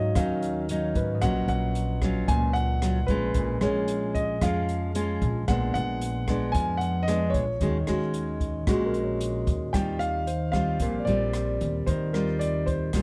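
Romantic and sunny, this bossa nova moves at 113 BPM in a straight 4/4, cut from a longer piece. A concert grand piano carries the melody with an intimate, smooth tone and audible action noise, while a fingerpicked nylon-string guitar sits up front with fresh strings and a classical touch. A barky tine electric piano adds bright, clean accompaniment in the background, and a pizzicato upright bass with steel strings gives a woody, growly, thumpy low end. An open jazz drum kit joins at 0.2 seconds with hi-hat, rim click and a boomy kick from a studio room. The harmony drifts through seventh chords before settling into Eb major at 9.7 seconds on an Eb69 chord. Close, detailed microphones and light reverb keep the sound clear and personal.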